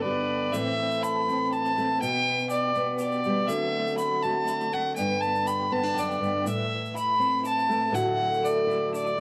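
This home recording on cassette carries a small-room ambience, a moderate spring reverb and some lossy compression artefacts. It is a reflective, melancholic acoustic folk piece in 3/4, cut from a longer work. Up front, a bowed fiddle with a dark, nasal, gut-string tone carries the melody, reedy yet smooth at the top. Beside it, a fingerpicked steel-string acoustic guitar rings bright with fresh strings and a tape-worn tint. A second, distant fiddle with a warm, reedy colour sounds only in the first 0.5 seconds. At that point an electric guitar through a small old amp enters in the background with lo-fi, slightly broken-up, twangy arpeggios coloured by tremolo. A grainy egg shaker sits at the back of a live room, while the harmony moves through G, A minor, D7 and a closing Dadd9 over A.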